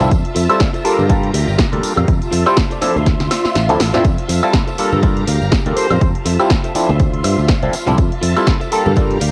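Heard through the soft haze of a home cassette recording with light reverb and digital ambience, this funky, sunny filtered disco house cut is driven by an overdriven electronic kick and a fingered electric bass sitting up front. A punchy analog drum machine supplies hi-hat, snare and woodblock, with a fill from 3.1 to 4.0 seconds during which the kick drops out from 3.6 seconds, while compressed congas and tambourine pump in the background. Above them a stringy, phased clav, a swirling string machine with sawtooth chords, and a twangy, gritty guitar riff move through Fmaj7, Gm7 and Dm9 chords, until a clear, roomy horn section with light vibrato and analog delay brings in the melody at 4.8 seconds.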